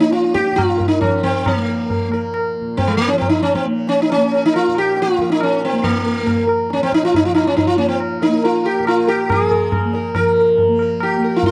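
A buzzing, round sitar with sympathetic strings sings up front over a softly plucked, shimmering tanpura drone, joined at 0.1 s by low-tuned, ringing tabla, in this longing, meditative Hindustani classical fragment in raga kafi on Bb, tuned to A4 = 436 Hz, which moves in a straight 5/4 at 138 BPM, speeds up throughout, and shifts into a new section at 10.2 s, all captured in a dry, close recording with a 1970s studio character.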